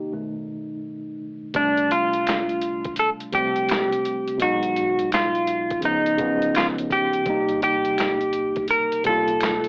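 A clean, hollow-bodied electric guitar sits up front with a fingered, compressed melody in this mellow, nostalgic lo-fi hip hop excerpt, cut from a longer piece and carried on a swung sixteenth-note feel. A worn, slightly out-of-tune tine electric piano opens alone, touched by cassette tape, before the sampler-style boom bap kit enters at 1.5 seconds and the guitar follows at 1.6 seconds. The kit sounds gritty and pitched down, with a thumpy kick, a medium-tuned snare, hi-hat and handclaps, all with a tape-softened edge, while a deep, round sine sub bass sits very quietly beneath. A close, human finger snap stays in the background. The harmony moves from B7 to Bbmaj13, Abm7, Db9 and Eb6, and the whole mix carries light reverb and the hazy feel of a home cassette recording heard through an AM radio.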